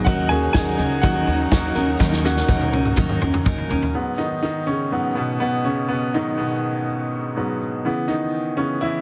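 A bright upright piano leads this bittersweet, earnest piano-driven pop fragment, its brilliant, intimate tone sitting up front with audible action noise and a woody body as it carries a solo through 9.0 seconds. In the opening section it is joined by a full-bodied picked steel-string dreadnought guitar playing a riff, a dark, thumpy pizzicato upright bass on gut strings, and a very quiet, lush bowed string section holding smooth, even sustained chords with vibrato. A natural country drum kit, recorded up front in a small room, brings a punchy kick, a medium-tuned snare, hi-hat and toms, with a drum fill starting at 2.0 seconds. At 3.9 seconds the strings, bass and drums drop away, the guitar follows at 4.0 seconds, and the piano carries on over minor seventh chords. Light reverb and studio ambience surround a heavily compressed, radio-style sound in a straight 4/4 feel.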